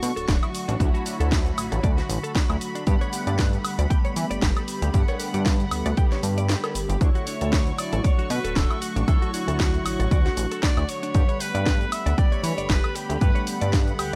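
A feel-good, groovy nu-disco cut from a longer piece, riding a lightly swung 4/4 over a Dmaj7 to Gmaj7 progression. A punchy, overdriven electronic kick sits up front alongside a glossy, nasal chorused synth bass, while a house kit adds a cracking snare, bright hats, shaker and woodblock with a small-room ambience. A round, dark synth brass carries the accompaniment with chorus, phaser, delay and sidechain pumping, and a studio string section holds smooth, bowed chords that also pump. A clean, direct-recorded electric guitar riff sits in the background from 0.2 seconds, and a distant cowbell briefly appears from 5.1 seconds, running into a short break at 6.5 seconds. From 7.3 seconds a forceful, roomy tenor saxophone takes the melody with vibrato and a touch of delay, in a dry, close mix.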